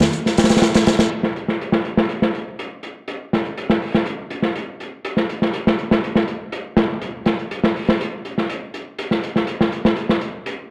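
A straight, funky breakbeat in 4/4 drives this gritty fragment from a longer piece, its crunchy, saturated acoustic drum kit sitting up front with a mid-forward, rolled-off sound and a medium-tuned snare, its kick, hats, snare and room all low-pass filtered, the kick dropping out from 0.1 to 1.1 seconds before returning, all set in a dark production with a lush hall reverb and a small room ambience.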